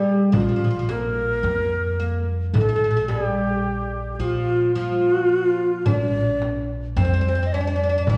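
Hypnotic and melancholic, this Arabic maqam ensemble piece moves at 109 BPM in eighths through a straight 10/8, set in Bb maqam rast with tuning at A4 = 443 Hz. An airy, reedy end-blown ney carries the melody up front, its straight tone and soft attack sitting between F4 and Eb5. Beneath it, a fretless oud plucked with a plectrum adds a woody second line on double strings, close and present. A pizzicato upright bass with steel strings anchors the low end, and a small frame drum played with soft hands joins at 0.3 s, compressed and saturated in the background. The whole ensemble is heard from further back in a recital hall with a reverb tail of 1.8 s, giving this brief section, cut from a longer piece, a spacious glow.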